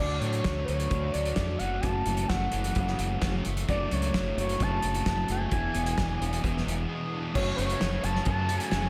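Moody and bittersweet, this indie rock passage, cut from a longer piece, moves at 130 BPM in a straight 4/4 in F# minor, its dreamy mix soaked in plate reverb. A smooth, dark synth lead carries the melody with vibrato, chorus and a diffuse ambient delay, its sawtooth and triangle tones sustaining high above the band. Beneath it, a bright, crunchy overdriven guitar plays a riff in the background with subtle chorus, while a fuzz guitar adds a second riff drenched in distortion, lush chorus and ambient delay. A growling fingered electric bass sits up front, punchy and overdriven, and a loose acoustic drum kit with a fat snare, tight kick, hi-hat and crash enters at 0.2 seconds in a pumping small room. The chords drift from Dmaj7 through F#m7 and E7, a brief break arrives at 6.9 seconds, and the music settles onto F#m at 7.3 seconds for a new section.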